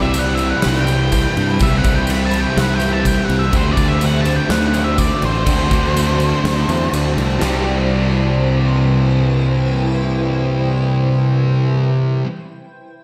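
A dreamy mix soaked in lush hall reverb opens this wistful excerpt of shoegaze-leaning dream pop, cut from a longer piece in a straight 4/4. A huge arena drum kit with a punchy kick, fat snare and bright crashes drives the first part alongside a jingly tambourine in the background, both falling away near 7.5 seconds. Up front, a growly fuzz bass holds the low end, while a crunchy overdriven guitar with reverse reverb and a dark, thick fuzz guitar with subtle chorus churn out riffs further back. A dark octave-fuzz lead guitar with analog delay carries the melody until about 6.9 seconds. Underneath it all, a cloudy, evolving granular pad with chorus sustains blurred chords across the Cmaj7 and D7 changes, lingering to 12.0 seconds as the guitars and bass ring on into the second section.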